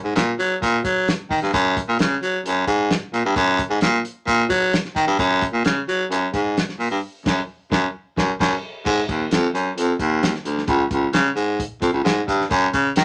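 A breathy, raspy baritone saxophone carries the bass line up front with light vibrato, joined from 0.2 seconds by a dry soul drum kit with a fat snare, tight kick and dark cymbals, driving this passionate 1960s-style soul excerpt toward a band accent at 7.0 seconds under light reverb.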